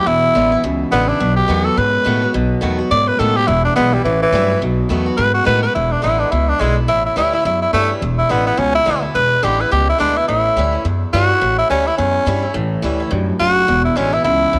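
Rockabilly at a brisk 212 BPM in 4/4 with a swung eighth feel, this upbeat, retro clip sits in E mixolydian over dominant-seventh changes on E7, A7 and B7. A raspy, gritty tenor saxophone carries the melody up front with vibrato, taking a solo through the first 5.8 seconds, while a boxy acoustic guitar picks swing-style accompaniment and a pizzicato upright bass with gut strings thumps out a woody, dark low end. A twangy, slightly broken-up electric guitar riff drops out at 5.7 seconds and returns at 12.6 seconds, all set in light reverb and a small-room ambience.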